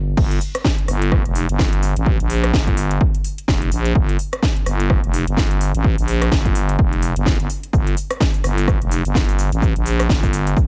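A growling, thick FM bass with tube saturation and sidechain pumping opens this swaggering, bouncy bass house excerpt in G minor at 127 BPM with a 16th-note swing, joined at 0.2 seconds by a punchy, overdriven electronic kick and an overdriven house kit of cracking snare, metallic hi-hats, rim click, shaker and crash cymbal for a dry, up-front drop.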